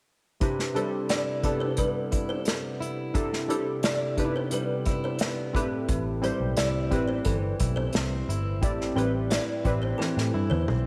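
This laid-back, hazy indie and bedroom pop excerpt features an up-front acoustic drum kit played with bundle sticks, its punchy kick and medium-tuned snare sounding polished in a small, airy room at 88 BPM in a straight 4/4. Underneath, a fingerpicked jumbo steel-string acoustic guitar, plugged in and full-bodied with audible finger squeak, carries a subtle chorus and a warbly pitch drift. Analog keys blend square and sawtooth tones, detuned and mellow with a filter sweep, fast attack, decaying notes and chorus. A woody kalimba adds a short, thumb-plucked second line, treated with ensemble chorus and slapback echo. The harmony in C major moves from Cmaj7 to Am7 at 5.5 s, a dark, round, foam-muted vintage electric bass enters up front at 5.9 s, and a drum fill begins at 10.0 s, all within a light studio reverb.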